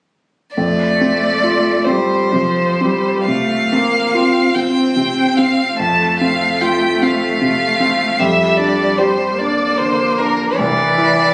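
Lyrical and warm, this slow romantic movement for piano trio, cut from a longer piece, unfolds in a rubato 12/8 as an up-front violin and a smooth, distant cello, both bowed with vibrato, carry a rich, focused melody and a second line over a clear concert grand with deep bass and short sustain, the harmony moving from F through Gm/F to C at 10.6 seconds, all heard through moderate recital hall reverb on a phone recording made in the room, which adds club reverb and compression.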